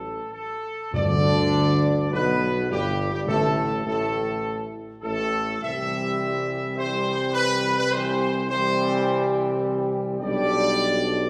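Regal and triumphant, this short classical brass passage in G major moves at 103 BPM in a straight 4/4, with a clear, up-front trumpet section carrying the melody over sustained chords from a distant, roomy French horn section and a tight trombone section in the background, a tuba with light vibrato and a smooth top anchoring the bass, and round, soft-mallet timpani sounding from 0.9 to 4.1 seconds, all set in the generous reverb of a recital hall.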